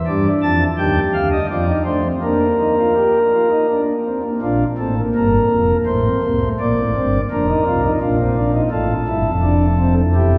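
Soft flute stops on a pipe organ open this short excerpt of a baroque-style three-part fugue in 3/4, elegant and lively, with the organ playing alone from 0.1 seconds and spanning deep bass notes up to a high upper line. The romantic, warm voicing sits up front, while a long cathedral reverb of 5.4 seconds blooms around it in a church or concert hall. A second section arrives at 4.4 seconds, and the harmony moves through Bb, minor and dominant colours before settling on F at 8.7 seconds, ahead of the close at 10.4 seconds.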